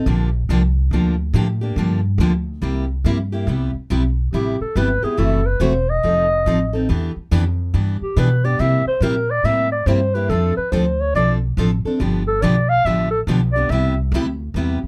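Acoustic string swing in the jazz manouche style, this playful, charming excerpt pairs a bright picked steel-string guitar and a woody, thumpy pizzicato upright bass on gut strings, with a mellow clarinet soloing from 4.3 s in a vintage jazz voice of light vibrato, subtone and scooped notes, all captured up close in a detailed sound with light reverb.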